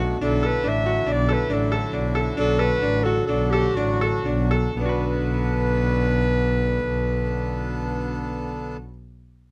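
A reedy, breathing harmonium holds sustained chords while a brilliant, long-sustaining grand piano spins arpeggios and a single bowed double bass, soft-edged and floating sul tasto, sits up front, before a warm, present solo clarinet enters at 0.2 seconds with a classical-style melody in this urgent yet hypnotic contemporary chamber piece in 5/4, which slows from 1.1 to 4.8 seconds as the harmony moves from Dadd9 to Bm7, heard close and dry in a detailed fragment cut from a longer work.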